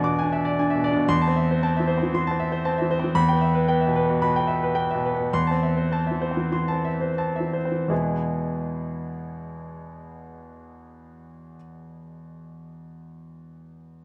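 This classical virtuoso piano study is a passionate, agitated fragment in 4/4, with free rubato between 81 and 118 BPM and tuning slightly below standard pitch at A4 = 435 Hz. A solo grand piano, clear, natural and up front, ranges from E2 to D6 over a minor-key progression that centres on A minor and E minor, and it broadens its pace from 2.1 seconds until a new section begins on an E major chord at 7.9 seconds. A moderate large-studio reverb gives the instrument an open, resonant space.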